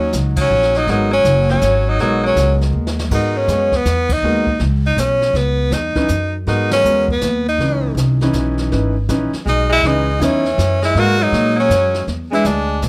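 A moderate club reverb gives this short cut from a longer small-group jazz piece a close, smoky atmosphere, and its moody swing in three rolls along over shifting minor chords. Up front, a tenor saxophone carries the melody with an edgy tone and vibrato, while a second tenor adds a punchy, forceful lower line with scooped notes, dropping out after the opening and returning at 9.5 seconds. A clear grand piano supplies the accompaniment, and a pizzicato upright bass with a woody, prominent presence anchors the low end. The brushed drum kit sits further back, with dark cymbals, a medium-tuned snare and a boomy kick. The whole band hits accents at 0.3, 4.0 and 6.7 seconds, and a short drum fill leads into the second statement of the theme.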